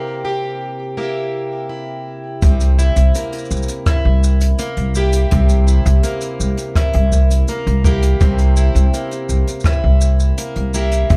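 A woody, growly pizzicato upright bass sits up front in this hopeful, delicate folktronica fragment, entering at 2.4 seconds alongside a boomy kick and a faint brushed kit of hi-hat, rim click and shaker. Before that, a plugged-in twelve-string acoustic guitar plays picked arpeggios alone under a filter sweep, its boxy, octave-doubled shimmer carrying finger squeak and digital delay over a C7 chord. The dark production keeps reverb to a minimum, giving the small ensemble a close, intimate feel.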